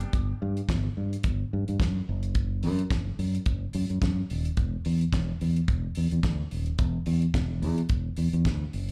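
A lightly swung 16th-note groove at 108 BPM in 4/4 drives this danceable, sultry disco cut in E minor, taken from a longer piece. A damped 70s drum kit, dry and up front with a fat snare, tight kick and hi-hat, plays alongside a punchy fingered electric bass, warm and direct, ranging from D#1 to G2 for the full 8.9 seconds. The sound is that of a live gig heard through the venue's PA, carrying a club reverb.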